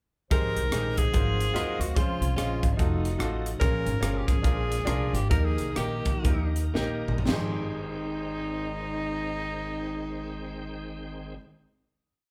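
Uptempo gospel with an uplifting, reverent mood, built as a short breakdown that slows from 3.6 seconds before a drum fill at 6.8 seconds leads into a final held chord at 7.3 seconds. A forceful, bright tenor saxophone sings motif-based jazz phrases with light vibrato over a brilliant grand piano in close-voiced quarter-note chords, a woody pizzicato upright bass walking with chromatic approach notes, and a punchy, up-front fusion drum kit driving a two-beat praise groove with a high-tuned snare until 7.4 seconds. In the background, a shouting, lightly overdriven tonewheel organ holds drop-2 chords through a fast rotary speaker and chorus vibrato, while a very quiet, tight French horn section adds a sustained pad, all in a lightly reverberant room as a live band.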